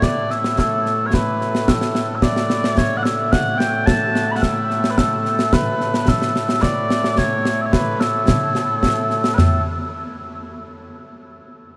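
Scottish traditional pipe music with a stirring, proud mood, this excerpt features mellow small bagpipes carrying a sweet, continuous melody with vibrato up front, alongside close, dry concert snare, bass drum and toms with dark cymbals, all set in a vast, echoing space with a huge ambient reverb, the pipes and drums both stopping by about 9.6 seconds.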